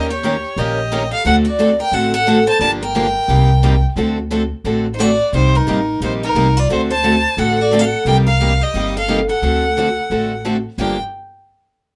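From the opening moment of this fiery, swinging jazz manouche passage, a nasal, boxy bowed violin with vibrato carries the melody up front, joined by a bright picked steel-string guitar on a second line, two more picked acoustic guitars in accompaniment (one with fresh strings and audible finger squeak, the other a full-bodied dreadnought), and a woody, thumpy gut-string upright bass played pizzicato, the ensemble sitting in a small, moderately reverberant room.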